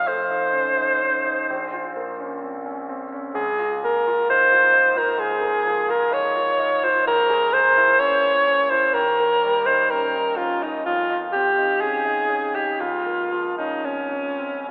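Classical romantic music for alto saxophone and grand piano, this lyrical, tender passage moves at a slow 64 BPM in 4/4 with a rubato feel, tuned to A4 = 444 Hz. The alto saxophone carries the melody up front as a solo voice from start to finish, its clear, classical-style tone marked by vibrato and a smooth top as it sings between Db4 and Db5. Beneath it, the concert grand piano supplies accompaniment throughout, sitting lower in the balance yet sounding intimate and polished, with deep bass, long sustain and audible action noise. The harmony opens on F7 and settles into Bb minor colours, passing through Bbm7b5/Db at 7.1 s and Eb at 9.0 s before returning to Bbm/Db at 12.8 s. A wet church reverb with a 2.7-second decay surrounds the duo, while a telephone-like filtering gives the whole 14.7-second fragment, cut from a longer piece, a narrow character.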